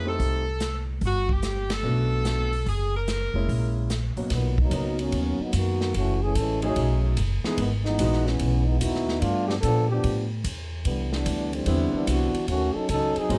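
This is big band swing with an energetic, brassy mood, moving at 147 BPM in 4/4 with a strongly swung eighth-note feel, cut from a longer piece. A tight, edgy saxophone section carries the opening melody with light vibrato, punctuated by a band accent at 1.6 seconds. Beneath it sit a long-sustaining baby grand piano and a woody, thumpy pizzicato upright bass placed up front. The polished, airy drum kit adds hi-hat, ride cymbal, a medium-tuned snare and a punchy kick. At 4.3 seconds the music settles into B major and a mellow trombone section takes a solo with a soft attack and light vibrato, while bass and drums carry on and the piano drops out at 8.2 seconds before returning near the close. The harmony moves through rich jazz chords such as Bmaj7, Emaj7 and Cmaj9, and the close, detailed recording carries light reverb.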